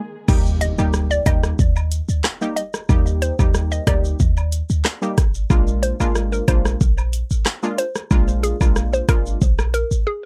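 Tough and hypnotic, this dancehall excerpt at 92 BPM rides an up-front deep house drum kit with a deep kick, crash, handclaps, hi-hat, rim click and shaker over a boomy, sine-like 808-style bass, while brassy, punchy synth stabs with chorus and sidechain pumping and a hollow, bouncy square-wave pluck melody with chorus and delay move from Eb to Bb7 at 5.5 seconds, backed by compressed woodblock and cabasa in the background and a very quiet electronic impact from 0.5 to 2.9 seconds, all in a dark, dry production.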